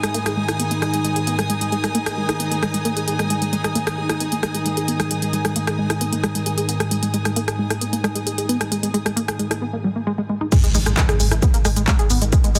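Intense and relentless, this driving peak-time techno excerpt at 133 BPM pairs a tight, detuned sawtooth synth riff with chorus, phaser, delay and sidechain pumping over an eerie, metallic FM drone, smooth-hatted techno drums with crash, claps, rim clicks and shaker, and an intimate bowed string section that stops at 9.6 seconds, while a filter sweep on the synth leads into a drop at 10.5 seconds, where a heavy, up-front electronic kick and a very quiet impact arrive, followed at 10.7 seconds by a deep, round sine sub bass with tube saturation, all within a heavily compressed, radio-like sound.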